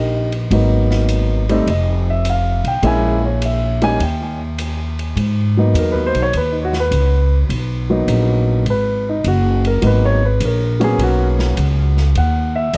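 Piano and upright bass open this late-night jazz trio cut together, with the drum kit joining at 0.3 seconds to set up a swinging 4/4 groove at 103 BPM in G# minor, the eighth notes lilting with a 69% swing. The grand piano sits up front with a mellow, rounded tone, carrying the melody through a touch of plate reverb and analog delay. Beneath it, the plucked upright bass is woody and close, its steel strings anchoring the low end from F1 to G#2. The drums sit further back, an airy, polished kit of hi-hat, ride and a medium-tuned snare with dark cymbals and a hall-like sheen. The harmony moves from D# through G#m9, a rootless G7b13/F, A#m7b5 and back to D# before landing on G#m9 again at 5.2 seconds, where the piano takes a solo that runs to the end of this fragment of a longer piece. A light room reverb and the soft grain of cassette tape give the whole trio a hazy, after-hours feel.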